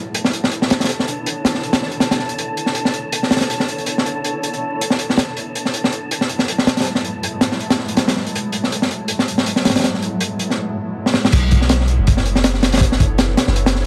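A crunchy, up-front breakbeat kit with a punchy kick, high-tuned snare and dark cymbals drives this nostalgic, atmospheric drum and bass and jungle excerpt at 161 BPM in B minor, swung lightly under a blurred, evolving granular cloud pad moving from Bm11 to F#m11, with a breathy, wind-like tuned noise texture in the background until 10.6 s, a drum fill at 11.0 s, and a deep, mellow 808-style bass arriving at the drop at 11.3 s, all set in small-room ambience with light reverb and vinyl crackle.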